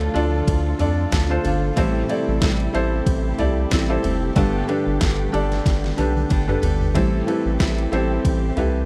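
Driving and bittersweet, this short cut from a longer piano-driven pop piece moves at 93 BPM in 4/4 with a light sixteenth-note swing, set in A minor over a Dm, Am7 and Gadd9 progression. A felt-muted upright piano carries the accompaniment up front, soft and intimate with audible action noise, and it adds a brief fill at 0.8 seconds. A fingerpicked steel-string acoustic guitar plays a full-bodied riff on a jumbo body, while a round analog bass sits up front with a deep, fast-attack, wave-folded tone. The pop drum kit is electronic and layered, with a knocking kick, a deep snare, ride cymbal, toms and overdrive, and it breaks into a fill at 5.7 seconds. Behind them, a dark studio string section holds lush, woody, sul tasto chords with vibrato, and the dry, close recording has a 1970s studio character.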